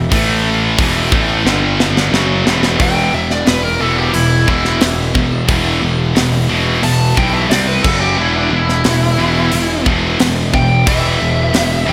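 A bright, high-gain lead guitar solo with slapback echo takes over at 2.8 seconds in this relentless, dark heavy metal excerpt in E minor at 89 BPM, after a half-time opening with a drum fill, riding over a fuzzy, overdriven picked bass and a tight, up-front drum kit with bright cymbals, while a distorted rhythm guitar and two scooped high-gain guitars (one with slapback echo, one double-tracked and very quiet) churn out riffs in the background, all set in a lush hall reverb for a big arena sound.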